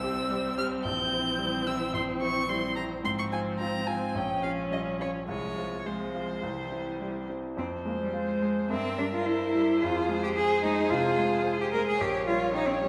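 A straight, steady 4/4 pulse drives this quick, dramatic movement for piano quartet in the classical-period style, and its restless character carries through the whole passage, which is cut from a longer piece. A single bowed violin carries the melody high above the ensemble, its tone expressive and full of vibrato, with portamento slides between notes, heard from a slight distance. Beneath it, one cello plays a focused, vibrato-laden second line, the most prominent of the strings, while a lone viola fills in the accompaniment with a smooth, even sound. The grand piano sits up front with a bright, brilliant, natural tone, supplying accompaniment that reaches down into its low register. The strings sit back in the generous wash of a scoring-stage reverb, and at 7.6 seconds the music moves from its opening section into a contrasting second one that runs to the close.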